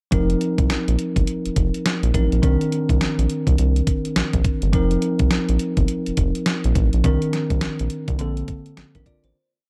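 Confident and bouncy, this short new jack swing R&B piece moves at 104 BPM in 4/4 with a heavy swing on the sixteenths. A crisp 8-bit digital drum machine lays down a hard-swung beat of thumpy kick, medium-tuned snare and hi-hat, sampler-style and tape-tinged, as if re-recorded in a small room. Underneath, a round analog synth bass mixes sawtooth and sine tones, detuned and nasal with a fast attack, carrying a deep, sustained, swung synth-funk line with muted ghost notes. A bell-like tine electric piano plays bright, clean held chords in drop-2 voicings through its built-in speakers, adding short fills as the harmony moves between F7sus4 and Cm9 before landing on Bbmaj9. The production is dark and warm with little reverb, keeping all three parts up front, and the whole verse fades out from 7.0 to 9.3 seconds.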